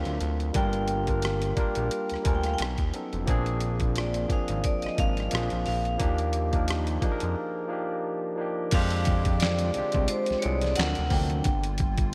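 A soulful, late-night neo-soul and R&B groove in F dorian opens at once with a barky, lightly overdriven tine electric piano laying down chords through a combo amp, a fat, saturated analog bass with a plucky filter and sustained sawtooth body, and a vibraphone carrying the melody with medium hard mallets and slow motor vibrato in a boxy small room. A boom bap sampler-style drum kit joins at 0.1 seconds, gritty and pitched down, with a thumpy kick, medium-tuned snare, rim clicks, handclaps, hi-hat and crash cymbal sitting up front at 88 BPM in 4/4 with a gentle sixteenth-note swing. The harmony drifts through altered dominants, minor sevenths and lush ninth chords such as Gm7, Bb9 and Ebmaj9, with a break from 7.4 to 8.7 seconds. At 8.7 seconds the section changes over an Fm69 chord, and a hollow, flute-like, very quiet pad enters with warbling ensemble chorus and a long release, while the electric piano stops at 11.5 seconds. 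The whole mix is dreamy and soaked in a lush hall reverb, and this fragment is cut from a longer piece.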